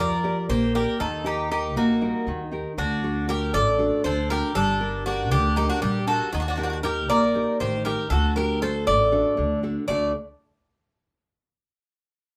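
A metallic, up-front Greek bouzouki carries the melody on its doubled strings, with a second bouzouki picking a lower line beneath it in this driving, tense Greek folk excerpt, cut from a longer piece in 7/8 at 236 BPM in eighths and set in D phrygian dominant. A nylon-string guitar fingerpicks the accompaniment with audible finger squeak, while a woody pizzicato upright bass sits up front, all four parts playing from 0.0 to 10.1 seconds. The chords move from Bb6 through Eb, D and Gm before returning to Eb and D, all in a small room with a moderate reverb.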